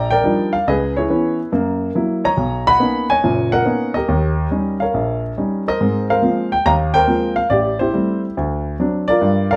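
Swung eighth notes in 4/4 give this short solo jazz fragment a relaxed, easy lilt. A baby grand piano carries everything alone, sounding intimate and up front with a natural tone, short sustain and audible action noise. It moves through lush major-ninth and seventh chords inside a moderate studio reverb and a dark production.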